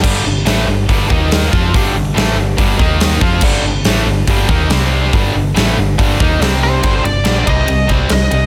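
A heavy, driving hard rock clip in G minor at 141 BPM opens with two picked guitar riffs, one tight and bright with distortion and the other overdriven further back. They sit over a dark, round hollow-body bass and a huge, up-front arena drum kit with a punchy kick, medium-tuned snare and glittering cymbals in a hall-like space. The riffs move between G5 and Eb5 power chords, then settle on G minor and C minor, and at 6.6 seconds a nasal, overdriven lead guitar with a parked wah and slapback echo adds a short melody up high.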